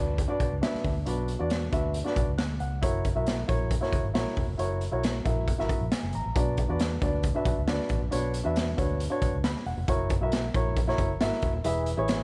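Uptempo 1960s-style soul at 136 BPM with an uplifting, warm mood, this short excerpt sets a dark, mellow baby grand piano, intimate and up front with audible action noise and short sustain, over a round, foam-muted fingered electric bass, while a raw garage drum kit of hi-hat, punchy kick and medium-tuned snare enters at 0.2 seconds with a gritty, saturated, pumping small-room sound and rolled-off top, the harmony moving between Bm and F#7 in light reverb.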